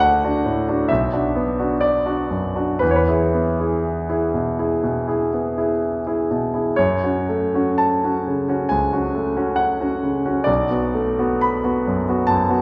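Heard through the reverberant bloom of a recital hall, a clear, natural-sounding concert grand piano with deep bass and short sustain sits up front in this lyrical, passionate romantic character piece, moving with free rubato through D, Bm, E and F#m before reaching Bm7 at 10.5 s in a brief passage taken from a longer work.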